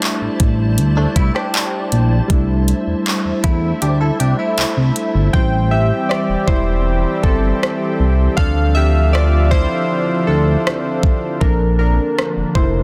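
A straight 4/4 groove at 79 BPM drives this dreamy, smooth contemporary R&B passage in C mixolydian, cut from a longer piece. An up-front electronic drum kit supplies a knocking kick, warm hi-hat, handclaps and rim clicks, while a nasal synth bass built from sawtooth and square waves sits prominently underneath. Round, detuned analog keys with chorus and filter sweeps carry the accompaniment over a glassy, ethereal FM pad that holds sustained chords in its own ensemble chorus and reverb. From 1.0 s a bright, twangy clean electric guitar picks compressed arpeggios through chorus and delay; the kick drops out at 3.8 s, and the guitar stops at 5.3 s. At that point the harmony shifts from C69 to Am7, then moves on through Dm7 to Bbmaj7, while the hi-hats fall away and the keys step forward as the solo voice, all within a dry, dense, heavily limited modern master.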